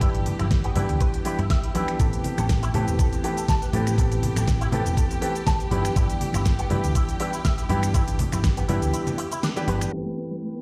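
Cosmic and groovy, this nu-disco cut in A minor moves at 121 BPM with a light swing, as a knocking, up-front electronic kick and a pop kit of fat snare, crisp hats, finger snaps and shaker drive the groove alongside ringing background congas, a dark, round hollow-body bass pumps beneath an intimate grand piano with audible action noise and tape echo, lush bowed strings hold sustained chords, and a clean, compressed envelope-filtered guitar riff rides a chorus effect, until a break from 8.9 seconds with a band accent at 9.4 seconds gives way to a soft, round pluck arpeggio at 9.9 seconds, the whole mix set in a stone-room reverb.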